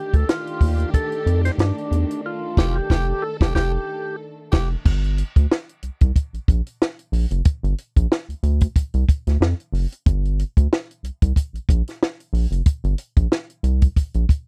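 A swung sixteenth-note funk groove in 4/4 drives this hypnotic cut from a longer piece. A compact cocktail drum kit with a high-tuned snare, tight kick, hi-hat and dark crash cymbal sits up front alongside a rubbery, hollow square-wave bass with a filter pluck and fast attack, and both play nearly the full 14.5 seconds. At the start, a percussive tonewheel organ with key click and a slow rotary speaker carries the melody over sustained F13 chords from a lush, woody string section with vibrato. From 2.6 seconds a raspy, gritty tenor saxophone adds a short second line on G4 while the band punches out an accent, and at 4.9 seconds the organ, strings and sax have dropped away as the harmony moves to Gm and drums and bass carry on alone. The sound is a dry, close 1970s-style studio recording with little reverb.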